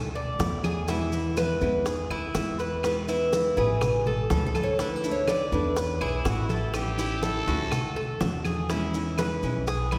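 A metallic, double-strung Cuban tres sits up front, picking arpeggios in this relaxed, sunny excerpt of Cuban son and guajira at 123 BPM in a straight 4/4. Beneath it, a woody, growly pizzicato upright bass with steel strings thumps prominently, while a bright, boxy fingerpicked flamenco guitar fills in the accompaniment over chords moving from Dadd9 and E through Amaj7, Dsus2, A7 and on to E6. Most of the percussion stays in the background: thin-skinned, damped congas played with hard hands, tight high-tuned bongos and woody claves, joined by grainy, mellow maracas that sit close and dry. At 2.8 seconds a fingerpicked classical nylon-string guitar carries the melody, and from 6.0 seconds a brilliant, raspy growling trumpet with light vibrato adds a punchy, gritty second line. The whole piece rings in the long, wet reverb of a church or concert hall.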